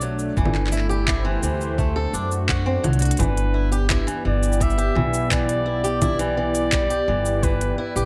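Pastoral folktronica fragment in which a smooth, warbling analog pad with chorus and 12-bit grit holds sustained chords beneath boxy picked swing-style acoustic guitar arpeggios with tape echo, a woody, up-front pizzicato upright bass, a tape-warm drum kit of cabasa, congas, handclaps and crisp hi-hat, and a muffled, thumpy electronic kick. A clear, vintage flugelhorn melody with tape echo joins them at 3.2 s just after a drum fill, all set in light reverb and digital ambience.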